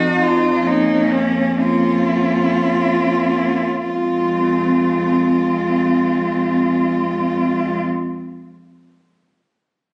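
In a rubato 3/4 that slows through the first 3.9 seconds at 47-67 BPM, this yearning, solemn classical passage for cello ensemble in F minor sets a rich, focused, up-front bowed cello melody with vibrato over a warm second cello that glides with soft-edged, expressive portamento, a third cello carrying the accompaniment, and a smooth, even bass cello, captured on a phone in a recital hall with moderate reverb.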